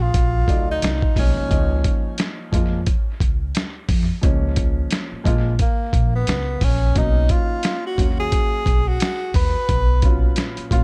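A breathy tenor saxophone solos from 0.0 seconds in this cool, smooth jazz-hop cut from a longer piece, its mellow subtone carrying a light vibrato, soft attacks and scooped notes, all trailed by a dub echo. Beneath it, a pizzicato upright bass with steel strings gives a woody yet bright acoustic foundation. A boom bap sampler-style drum kit enters at 0.1 seconds, sitting up front with a thumpy kick, a medium-tuned snare and hi-hat, sounding compressed, pitched down, gritty and tape-warm, as if re-recorded in a small room. A warm upright piano joins at 0.5 seconds, quieter in the mix, comping through a rootless Cbmaj9, Cdim7 and a long Db69 before returning to Cbmaj9. The 16th notes carry a gentle swing, and the whole track sits in an echo-heavy studio ambience.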